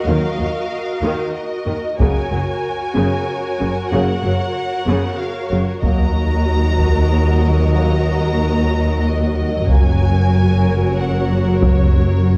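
This dark, relentless passage of epic orchestral film score, cut from a longer piece, opens with bowed strings and horns together in a steady three-beat metre. A rich, distant violin section carries the melody with smooth, even vibrato, while a second violin line adds a focused tone with a silky top. The violas supply expressive accompaniment beneath, and a French horn section holds shadowy sustained chords in the background from a roomy distance. Lush cellos and double basses, soft in attack, anchor the low end. At 2.0 seconds a taiko ensemble enters with heavy sticks, its compressed, saturated hits forming the loudest part and driving the music onward under a moderate scoring-stage reverb and a dark, warm overall production.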